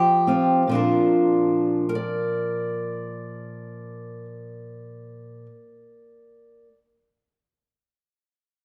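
Closely miked with light reverb, this short folk fragment puts a fingerpicked steel-string acoustic guitar up front, the detailed recording catching the finger squeak in its warm tone. The mood is peaceful and pastoral, moving at an unhurried 49 BPM in a straight 6/8 in Bb major. The guitar plays accompaniment throughout its 6.7 seconds, opening on Fsus2 before settling onto Bb at 0.7 seconds.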